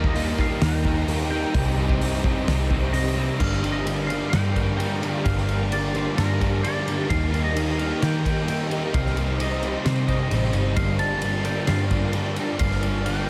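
A steady, straight 4/4 pulse at 130 BPM drives this hazy, dreamy shoegaze and dream pop excerpt in G minor, cut from a longer piece and moving from Eb and Cm7 into Gm7 as the second section arrives at 3.4 seconds. A loose indie drum kit sits up front in a pumping studio room, its punchy kick, fat snare, hi-hat and dark crash and ride cymbals carrying the beat, while a round, foam-muted vintage electric bass anchors the low end with a dark, amped tone. Two guitars share the riff: a thick fuzz guitar thickened by distortion and ensemble chorus, and an overdriven electric guitar tucked in the background and colored by reverse reverb. Above them, a clean, twangy electric guitar plays the melody through lush chorus and diffuse ambient delay, while a swirling, bright string machine with a slow attack and long release holds sustained chords under ensemble chorus and phaser. The whole mix is soaked in a huge ambient reverb with an 8.2-second tail, blurring the parts into a single dreamy wash.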